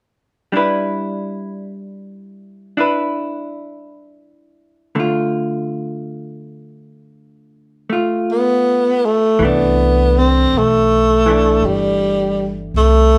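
A clean, dark-toned hollow-body electric guitar opens at 0.5 s, picking compressed, up-front accompaniment chords that move from G6 to Dm in this intimate, tender jazz ballad. The pace is a slow 54 BPM in 4/4, with a swung feel on the eighth notes and a home key of C major. At 8.3 s a breathy tenor saxophone steps forward as the solo voice, carrying the melody in a low register with vibrato and scooped notes in a jazz style. An upright bass joins at 9.4 s, its woody, thumpy pizzicato on steel strings grounding the music as the harmony settles on C69. The band sounds as if it is playing live together in one room, wrapped in light reverb, and the recording is a fragment cut from a longer performance.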